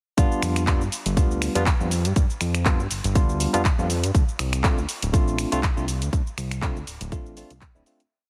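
Heavily compressed and radio-like with little reverb, this short, nostalgic and groovy filtered disco house drop sets a punchy, up-front four-on-the-floor electronic kick under a house kit of bright hats, shaker, finger snaps and handclaps that pump with the sidechain, while a fat, tube-saturated detuned sawtooth bass plays a funky syncopated line and a barky tine electric piano, phased and pumping through a combo amp, plays a rhythmic close-voiced chord riff moving from G7 to Dm7 before the whole piece fades out from 5.5 seconds.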